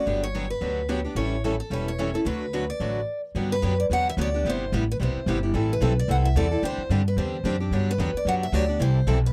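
A boxy parlour steel-string guitar picks the melody over a bright, picked concert steel-string guitar's chords from the first moment, joined almost at once by a woody, thumpy upright bass on gut strings and, in the background, a swing-style acoustic guitar with audible finger squeak. This lively jazz manouche excerpt swings at 220 BPM in 4/4, in D major with chords moving through Gmaj7, A7 and D6. After a stop at 3.1 seconds it shifts to G major at 3.4 seconds, with Gmaj7, Am7 and D7sus4, in a dry, close 1970s-style studio sound with light reverb.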